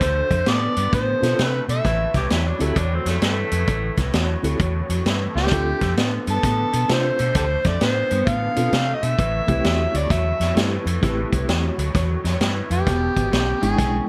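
Soulful and brooding, this excerpt of an electric blues shuffle in A minor swings at 131 BPM as a gritty, overdriven harmonica leads with tongue slaps, scooped notes and plate reverb, briefly giving way at 2.2 seconds to a clear, vintage-toned tenor saxophone line before returning after a drum fill at 5.3 seconds, all over a slightly broken-up, lo-fi guitar riff with analog chorus, a dark, round, foam-muted fingered bass, an up-front vintage kit with a punchy kick and a high-tuned snare, and a reedy, bright electric piano with tremolo that enters at 1.2 seconds, moving through Dm7 and Am7 toward a closing E7#9.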